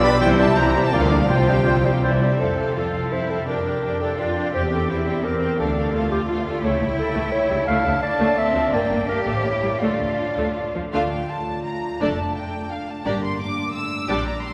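Classical and dramatic, this restless fast romantic orchestral excerpt at 170 BPM in 3/4 moves with rubato from F major into D minor at 6.6 s. Lush vibrato violins carry the melody over a background violin line, focused viola accompaniment, a mellow solo clarinet that stops at 10.7 s, and smooth, even cello and distant double bass sections on the bass. In the opening seconds a hollow flute group, a roomy oboe, a very quiet vintage-toned bassoon, a dark French horn section and close, dry hard-mallet timpani add colour, with the horns returning at 10.9 s, all within a wet cathedral reverb.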